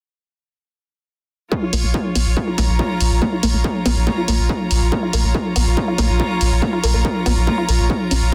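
Over a straight, driving 4/4 pulse at 141 BPM, this dark, industrial peak-time techno excerpt in Bb minor sets a heavy, overdriven electronic kick and an analog-toned electronic hi-hat beneath a thick, saturated sub bass sitting up front on Bb1, while a squelchy, detuned blip pluck riff with phaser and dub echo lurks in the background and a rich, earthy chamber string section with light vibrato adds bowed texture, the pluck, strings and bass all pumping against the kick, with a filter sweep on the synth arpeggio running from 1.5 to 8.3 seconds over a single Bbm chord in a dense, heavily limited mix with light digital reverb.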